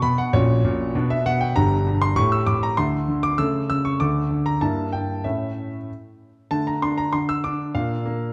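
A clear, up-front solo concert grand opens this brief, serious and elegant fragment of a classical-period piano sonatina in a straight 2/4, its smooth, vintage tone and deep bass spanning G1 to E6 within a dark production steeped in wet recital-hall reverb, before a new passage begins at 6.5 seconds and a Bb chord arrives at 7.7 seconds.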